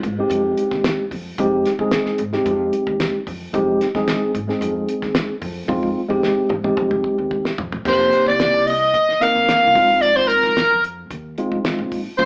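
Driving and nocturnal, this electric jazz fusion excerpt moves at 111 BPM in a straight 4/4 in F dorian, with a mellow tine electric piano up front over woody pizzicato upright bass and a damped 70s drum kit with dark cymbals, a fat snare and a tight kick, all heard as a band playing live in one room through a moderate studio reverb and an AM radio sound. A drum fill from 5.7 to 7.9 s leads into a new section where a soprano saxophone, up front with light vibrato, subtone and scooped notes, takes the melody while a biting, double-tracked overdriven guitar plays a second line in the same range. The harmony moves from Fm7 to F9sus4 and then Bb9sus4.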